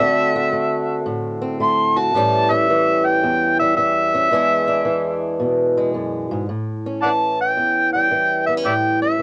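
A home cassette recording with moderate booth ambience catches a gritty, soulful acoustic country blues excerpt in A mixolydian at 111 BPM with a swung 4/4 feel, where an overdriven, amplified harmonica with vibrato, tongue slaps and scooped notes takes a jazz-styled solo up front over a boxy, fingerpicked swing-style acoustic guitar whose finger squeaks surface as the chords move from D7 through A7 and E7, with the solo running until 6.5 seconds.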